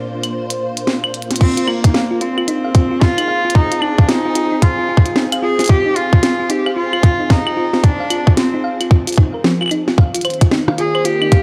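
A soft string machine opens alone on a sustained Bbadd9 chord, silky and dark with ensemble chorus and a layer of vintage 12-bit sampler grit, while a glitchy drum kit of claves, crash cymbal, clicky hats, a tiny snare and percussion blips enters at 0.2 seconds and plays a fill at 1.1 seconds. At 1.4 seconds this melancholic, eerie IDM cut in F dorian settles into a swung 112 BPM groove in 4/4 as a tight, up-front electronic kick drum arrives, re-recorded in a large room. A bowed cello, rich and reedy with light vibrato and a nasal gut-string tone, takes the melody from the same moment, its single player sounding distant through tape echo. Alongside it, a round, tine-like synth pluck in the manner of a thumb piano spins mellow arpeggios through chorus and digital delay. The harmony moves from Fm to Ebmaj7 at 10.0 seconds, all within a dark production of light reverb and digital ambience, cut from a longer piece.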